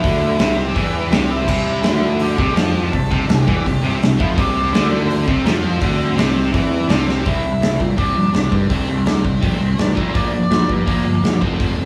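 A live-in-one-room punk rock recording with a moderate large-studio reverb, this rowdy, rebellious fragment of a longer piece charges along at 166 BPM in C mixolydian, shifting from C to Bb at 10.0 seconds. Up front, a big, dark acoustic drum kit with a punchy kick and medium-tuned snare drives the band, throwing a fill at 7.1 seconds, while a growly, fuzz-soaked picked bass sits underneath and two bright distorted guitars pick out riffs in the background, the tighter one dropping out at 7.3 seconds. Over it all, a nasal, shadowy lead guitar with a parked wah and overdrive carries the melody.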